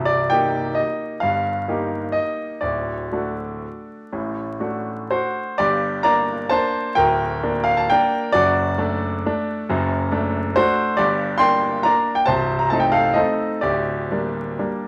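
A classical piano waltz in 3/4 with an elegant, bittersweet mood and a flexible rubato feel, played by a solo concert grand with a clear, smooth, vintage, up-front tone, deep bass and short sustain, set in a large studio reverb under a layer of vinyl crackle, its harmony moving from Cm7 and D into a second section that circles around Gm before the excerpt is cut from a longer piece.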